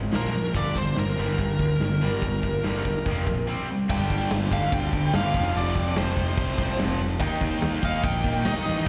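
A straight 4/4 pulse at 144 BPM drives this menacing, heavy hard rock passage in G minor, cut from a longer piece, with a big rock drum kit in a dark, roomy sound with a punchy kick entering at 0.1 seconds beneath a fuzzy, round picked electric bass up front. Two bright, overdriven cranked stack guitars play the riff in the background with slapback echo, while a bluesy lead guitar carries the distorted, picked melody from 0.2 seconds, colored by slapback and tape echo. The whole thing sounds like a live gig heard through the venue's PA, bathed in recital hall reverb, with the harmony moving from Bb5 and Gm toward Eb.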